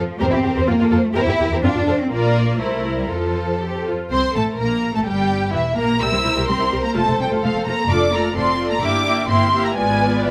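In a rubato 2/4, this quick classical-period excerpt for string orchestra feels stormy and urgent. A lush, up-front violin section carries the expressive melody with soft attacks and vibrato, while a second, smooth and even violin line moves beneath it; the viola section joins at 0.2 s with clear, intense accompaniment. Rich cellos and woody double basses form the bowed bass, and close, detailed microphones with light reverb capture the ensemble as the harmony darkens toward a diminished chord at 9.8 s.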